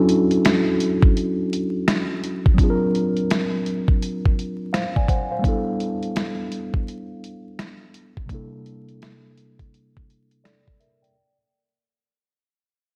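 Swung sixteenths in 4/4 carry this cosy, dreamy lo-fi hip hop fragment, where a gritty, compressed sampler-style drum kit with thumpy kick, medium-tuned snare, hi-hat and finger snaps sits up front beside a worn, slightly out-of-tune tine electric piano moving through Dmaj9, D7alt, G6 and C13 under a filter sweep, the mix steeped in lush hall reverb and vinyl crackle as the passage fades out.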